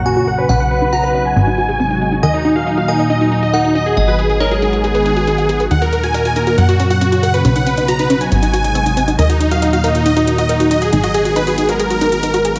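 Uplifting trance with a soaring, bittersweet mood, opening on a very quiet electronic impact as huge, detuned supersaw chords carry the melody up front through a low-pass filter and digital delay, backed by a silky string pad with ensemble chorus and a punchy, tube-saturated plucky analog bass. A glassy, crystalline synth bell warbles with chorus and tremolo as a second line until 4.8 seconds, while a tight, driving sequenced synth arpeggiates in the background with a cassette-tape tint. A metallic, overdriven electronic hi-hat sits low in the mix, and filter sweeps run across the drums, supersaw and arpeggio throughout, all placed in a moderate concert hall reverb over a cycling chord progression.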